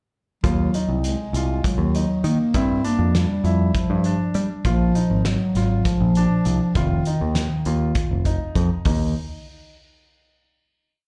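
Tense and intricate, this short progressive instrumental piece in Eb dorian moves in a straight 7/8 at 200 BPM, with a dark, close-miked bass clarinet playing a classical-style, motif-based solo melody with digital delay over a present grand piano ostinato treated with slapback echo and delay, an up-front picked electric bass driving a syncopated riff, and a loose indie drum kit with fat snare and punchy kick pumping through the room, all heard as a live gig through the venue's PA with moderate club reverb, through chords of Ebm, G5, Bb and Ebsus2/F before a final note ringing from 8.9 to 11.0 seconds.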